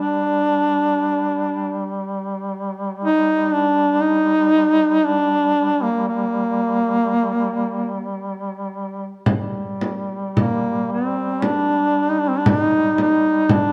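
Caucasian folk in the manner of a lament, this short excerpt moves at a slow 58 BPM in 3/4 with uneven, rubato beats in G minor, carrying a longing, solemn mood. A duduk sings the melody up front within a narrow span from Bb3 to Eb4, its tone mellow with vibrato, soft attacks and scooped notes in a folk style. Beneath it a second duduk holds a quieter drone on G3, sharing the same vibrato and gently scooped, soft-edged voice. At 9.3 seconds a small frame drum enters up front, bright and acoustic with a vintage, band-limited character and hard hands, and it plays through to the close at 13.7 seconds. A wet recital hall reverb with a 1.4-second decay surrounds the whole, lending the lament a spacious, resonant setting.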